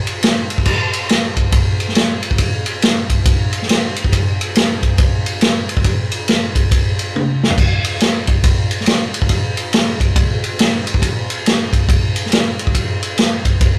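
Rock drums carry this short, driving excerpt on their own, with a swaggering swing to the eighth notes in 4/4 time. A vintage acoustic kit plays from 0.1 to 13.7 seconds, built from a punchy kick, a medium-tuned snare, toms, and dark ride and crash cymbals. The kit sits up front with a natural, rolled-off top end. At 7.1 seconds a drum fill breaks up the groove before the beat returns. The sound has the rough character of a rehearsal-room recording, with tube saturation adding grit and a light reverb placing the drums in a studio room.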